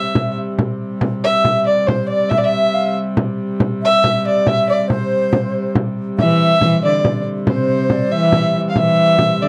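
A dry, close recording with a 1970s studio character and a moderate, short studio reverb frames this festive, ancient-sounding medieval dance in C major, moving at 93 BPM in a straight 6/8, cut from a longer piece. A dark, woody fiddle with light vibrato carries the melody up front, shadowed by a breathy, tongued concert flute in the background and grounded by the nasal, reedy drone of a hurdy-gurdy with an airy bow, while a small, bright frame drum played with soft hands keeps time. At 6.2 seconds a fretted viola da gamba enters as a second line, its biting, ringing tone adding weight to the close of the passage.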